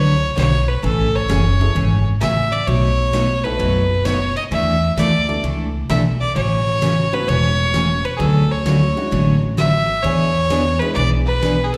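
A clear, up-front fiddle carries the melody in this cheerful, down-home western swing excerpt, its bowed line airy and intense with a light vibrato and a boxy edge, touched by slapback echo. The tune moves at 130 BPM in 4/4 with a swing feel on the eighth notes, set in A major over rich chords such as Amaj7, B7, A69 and Dmaj9#11 before landing on E7. A bright, full-bodied jumbo acoustic guitar with fresh strings is picked throughout, finger squeaks audible, while a woody pizzicato upright bass sits prominently underneath. A big-band drum kit with punchy kick, medium-tuned snare, hi-hat and ride swings quietly in the background from 0.4 seconds, and an intimate, slightly detuned upright piano with audible action noise and short sustain joins at 1.6 seconds. The sound is that of a live gig heard through the venue's PA, with light recital-hall reverb, and the clip is cut from a longer piece.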